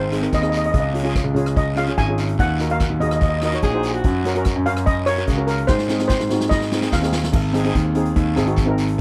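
Carefree and festive, this short calypso clip at 146 BPM opens with a dark, smooth lead steel pan carrying the melody through tape echo until 7.1 seconds, supported by a mellow second steel pan on accompaniment and a deep, up-front concert grand piano holding down the bass. A polished street-band drum kit with a boomy kick and dark cymbals drives the groove alongside a raspy, vintage-sounding guiro, and the drums play a fill from 5.7 seconds. A breathy, distant alto saxophone slips in briefly at 3.6 seconds, all within a dry, close 1970s-style studio sound.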